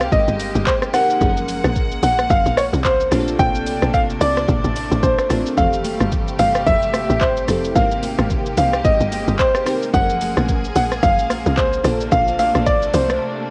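Amapiano at 110 BPM in 4/4 with a swung sixteenth feel, relaxed and soulful, heard in a short cut from a longer piece. A clear, up-front concert grand piano carries the melody in a high register, its notes trailed by tape echo, over glassy, detuned digital keys with chorus and sweeping filters, and a smooth symphonic string section holding sustained chords with light vibrato. The harmony drifts through lush major-ninth chords, opening on Abmaj9 and moving through Gbmaj9, Bbmaj9 and Fmaj9 before circling back. Underneath, a tight, punchy log drum bass with a fast attack and noisy edge drives the low end, while an electronic afro-pop kit supplies a deep kick, metallic hi-hats, handclaps, rim clicks and shaker. Ringing, high-tuned congas slip in very quietly at 5.6 seconds, and the bass and drums break off at 13.2 seconds, leaving the keys, strings and piano to ring out in a studio reverb with the soft, lo-fi grain of a home cassette recording.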